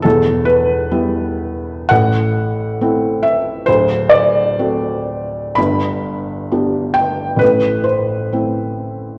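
A felt-muted upright piano, soft and intimate with audible action noise and short sustain, sits up front in this wistful, mournful romantic nocturne at a rubato 57-71 BPM in 4/4, moving from Em through Am, D7 and G back to Am across the 9.2-second fragment, its mellow tone bathed in recital hall reverb and the warbling pitch drift of worn cassette tape.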